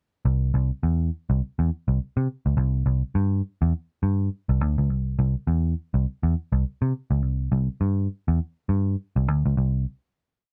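A vintage electric bass, picked and foam-muted, opens the piece alone at 0.3 s with a playful, strutting funk groove in C major. Its tone is dark, round and amped, sitting up front in a dry, close 1970s-style studio sound touched by light reverb. The syncopated riff stays anchored on the downbeat and slips in chromatic approach notes, moving between C2 and C3 at 103 BPM in 4/4 with a 60% swing on the sixteenths. The groove gives way to a final chord at 9.6 s, and the bass plays on until 9.8 s, closing this short, complete funk piece.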